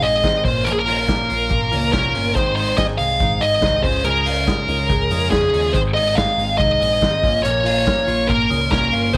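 Set in a moderate plate reverb, this short excerpt of jangly indie pop moves at a brisk 142 BPM in straight 4/4, with a bright, youthful mood and tuning at A4 = 438 Hz. Up front, a dark, high-gain picked electric guitar carries the melody between Ab4 and F5, its distorted tone trailed by a slapback echo. Behind it, a clean, compressed twelve-string electric guitar spins arpeggios with a warm glow, while a full-bodied jumbo steel-string acoustic, picked and colored by tube saturation, fills out the accompaniment. A round, amped electric bass anchors the low end from G1 to F2, and a vintage acoustic drum kit in a small, pumping room adds a punchy kick, a medium-tuned snare and hi-hat with a rolled-off top. All five parts play throughout the 9.2 seconds over the progression Bbm, Ab, Db, Ab and back to Bbm.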